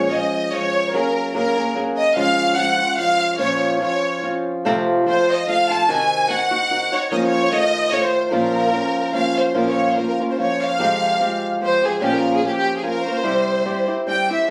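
Dramatic and passionate, this mariachi-style Mexican folk excerpt in Bb minor moves at 146 BPM in a swung 3/4, with a close, up-front violin section carrying the melody through expressive vibrato and portamento over a dark, fingerpicked flamenco guitar accompaniment, both heard throughout the 14.5 seconds in moderate studio reverb with a phone-in-the-room, compressed sound, shifting to a second section at 9.6 seconds.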